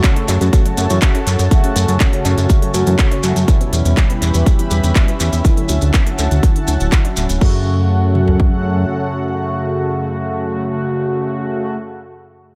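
A dark, dramatic melodic techno excerpt at 122 BPM in F# phrygian opens with a punchy, up-front house kick and toms, crisp hi-hats, handclaps and crash, a grainy shekere, a bright, very quiet detuned pluck arpeggio, bold brassy synth stabs with chorus and echoing delay, and a lush, slow-attack unison pad pumping beneath, joined at 0.3 seconds by a fat, thick sawtooth bass and at 1.4 seconds by a mellow, warbling vintage drone in the background, before the shekere, hats, claps and pluck fall away between 7.4 and 7.6 seconds, leaving kick and bass briefly under pad, brass and drone as the chords return to F#m in a dry, echo-heavy mix.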